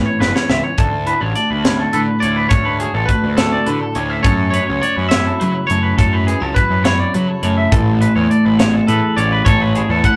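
A punchy, high-tuned fusion drum kit opens with a fill and drives this intricate, wistful math rock and midwest emo excerpt in 6/8 at 69 BPM, where a bright, compressed twelve-string electric guitar and a scooped twangy guitar's clean arpeggios ring over fuzz-overdriven picked bass before a second twangy guitar melody enters at 1.9 seconds, moving through Dmaj7, F#m7 and Amaj9 in a rough rehearsal-room sound with light reverb.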